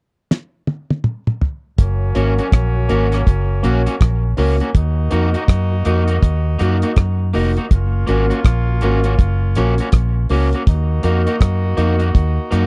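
A dry, close-sounding 1970s-style studio recording with little reverb, this short cut from a longer roots reggae track has a laid-back, uplifting mood and a swung 4/4 feel. A thuddy, cloth-damped drum kit opens with a fill at 0.3 seconds, its fat snare, tight kick, hi-hat, rim clicks and toms sitting up front with a rolled-off top. At 1.8 seconds a dark, round, foam-muted fingered electric bass arrives up front, along with a clear, tight horn section playing a second line with tape echo. A smooth concert grand piano with a deep low end adds stabs just after, and an electric guitar at the edge of break-up, twangy and picked with tape echo, fills out the accompaniment. The harmony moves between F# and D#m.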